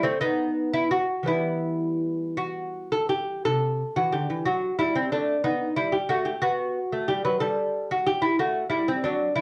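Solemn and flowing, this brief passage is cut from a longer baroque-style dance in 6/8, played with a free, rubato feel. A single lute carries the whole performance alone, fingerpicked with a delicate touch across a range from C3 up to B4. Its gut strings and double courses, some strung in octaves, give the tone a warm body, and the instrument sits up front in the mix. The music opens unaccompanied by harmony before settling onto E minor at 1.3 seconds, then moves through A minor over C and a bare B fifth before coming to rest on a rich E minor eleventh. A light studio reverb and a cassette-tape character lend the recording an intimate, slightly aged quality.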